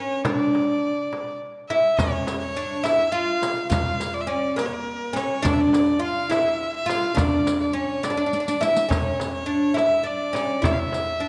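A woody, plectrum-plucked fretless oud with double strings sits up front, carrying the longing, melancholic melody of this Persian modal ensemble piece in D avaz esfahan, tuned to A4 = 437 Hz and moving at 69 BPM in 6/8, over a nasal, earthy bowed violin second line with light vibrato and a bright, hard-handed frame drum; a distant, deep tombak and a background riq with jingling enter at 2.0 s, a drum fill marks 8.3 s, and the ensemble sits in a moderate concert hall reverb.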